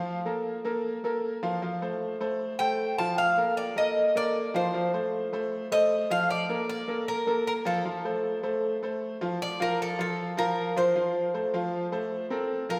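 A straight, danceable 4/4 pulse drives this Latin excerpt, with a brilliant, vintage-toned grand piano rolling out arpeggios up front from the opening, cycling through major-seventh and dominant-seventh harmony. At 2.6 s a picked Cuban tres joins with the melody, its metallic double strings, some doubled at the octave, ringing out close and present. The music reaches a chordless passage at 9.4 s before moving to an F chord, all wrapped in the long, wet reverb of a church or concert hall that gives the warm mood a spacious glow.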